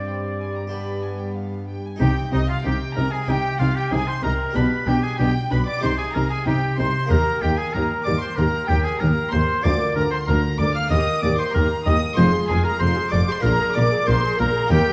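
A stormy, dramatic baroque-style concerto movement in classical style, this short passage is cut from a longer piece and moves at a steady, straight-feeling pulse in four. A clear oboe carries the solo melody up front, its light vibrato set in a distant, roomy space. Two chamber violin sections of gut-string, period-style tone surround it, one carrying the melody high above from the background and the other weaving a second line. A nasal, dark viola section and a full, Flemish-style harpsichord with two sets of strings fill in the accompaniment from the background, while a close, reedy cello section anchors the bass from the start and a double bass section joins it at 2.0 seconds. The harmony opens on a suspended chord before settling into minor and moving through a sequence that ends on a dominant seventh, all heard in a moderate recital hall reverb with a layer of vinyl crackle.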